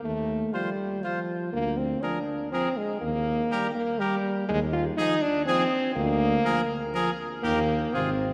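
A dark, up-front French horn carries the accompaniment in this short classical brass quintet excerpt, its light vibrato and punchy tone rounded by a smooth top as it sounds from 0.0 seconds to the close at 8.3 seconds. Beneath it, a distant, roomy tuba holds the bass, and a very quiet trombone adds soft-attacked, vibrato-touched support, both mellow. Two clear trumpets enter at 0.5 seconds: one sings the melody with punch and vibrato, while the other traces a second line from further back in the room. In Eb major at 121 BPM in a straight 3/4, the harmony moves from F7 over Eb through Bb7 over D to settle on Eb, then repeats the pattern with Fm7 over Eb before closing on Eb again. The mood is triumphant and warm, and a wet church reverb with a long 3.6-second decay gives the ensemble a spacious, resonant glow.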